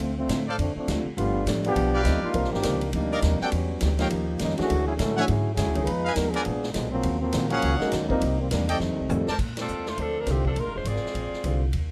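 Swinging at 204 BPM in 4/4 with a lilting eighth-note feel, this joyful big-band jazz passage opens with an up-front trombone section carrying a solo line with light vibrato, backed by a woody, growly upright bass, a punchy drum kit in a big room, and a dark hollow-body electric guitar in the background, with an intimate grand piano whose action noise can be heard joining at 0.9 s. A bright trumpet section adds stabs from 0.5 s, and after a drum fill the band hits an accent at 9.5 s as a mellow, tight saxophone section takes over the melody. The sound is dry, with some lossy compression artefacts, and the clip is cut from a longer piece.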